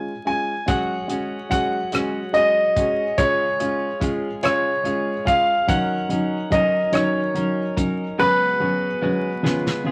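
A brilliant concert grand carries a heartfelt, romantic melody in this six-eight pop ballad excerpt, with a felt-muted upright piano underneath adding mellow, intimate accompaniment with audible action noise. At 0.7 seconds a clean, compressed electric guitar enters with picked arpeggios, alongside a dry 70s drum kit with a fat snare, tight kick, hi-hat and rim click, which plays a fill at 9.4 seconds. Moderate studio reverb and a layer of vinyl crackle give the sound a warm sheen as the chords move from C# through F#sus2, back to C#, then D#m7 and on to C#7sus4.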